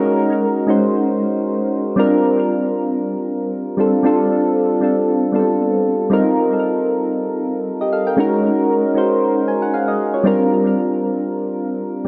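This amapiano excerpt has a late-night, soulful mood, with a lightly swung sixteenth-note feel in 4/4. A single soft, electric-piano-like synth keys part plays alone throughout, its round, mellow tone shaped by a fast attack and a decaying tail, and sitting up front between G3 and Ab5. Chorus, phaser and delay color the keys, and a lush hall reverb with a 2.2-second decay surrounds them in a dark production. The opening two seconds act as a drop before the main passage begins at 2.0 s and runs to 12.1 s. The harmony moves through suspended ninth chords, from Ab9sus4 to C9sus4, G9sus4 and F9sus4, then returns to Ab9sus4 and C9sus4.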